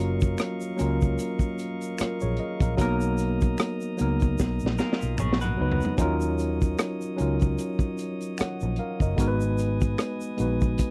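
A gently swung sixteenth-note groove from a crunchy, gritty breakbeat kit with a high-tuned snare and tight kick anchors this smooth, late-night neo-soul R&B excerpt, where a worn, slightly out-of-tune tine electric piano sits up front over a round, foam-muted fingered bass and faint, clear tonewheel organ chords, a tube shaker and finger snaps add light texture, and a lo-fi, slightly broken-up electric guitar with harmonic tremolo slips in from 4.8 to 6.0 seconds during a drum fill, captured in a close, dry 1970s-style studio sound.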